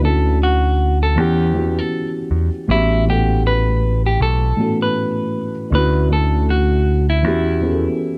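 A 79 BPM groove in 4/4 with a 57% swing on the sixteenths sets up this nostalgic, melancholic lo-fi hip hop fragment, cut from a longer piece and drifting through Dmaj9, Em69 and A13 before circling back. A felt-muted upright piano carries the accompaniment with a soft, intimate tone, audible action noise and a cassette-tape haze, while a clean, dark electric guitar picks out the melody between E4 and B4, both softened by a low-pass filter. A picked electric bass sits up front with an amped warmth until 7.9 seconds, all within a dark production touched by light reverb.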